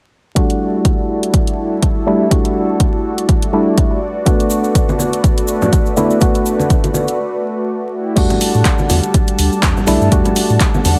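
Deep house at 123 BPM in E minor, warm and hypnotic, where a punchy, tape-warm kick and analog drum machine with hi-hat, handclaps, finger snaps and crash cymbal drive lush, chorused pad chords and hollow, delayed organ stabs over Em11 and Bm7, with a grainy shaker and bright, soft-handed congas joining before a break at 7.2 s, after which a round sine sub bass enters at 8.2 s and a very quiet, ethereal pad drifts in at 9.4 s, all under light reverb and vinyl crackle in this cut from a longer piece.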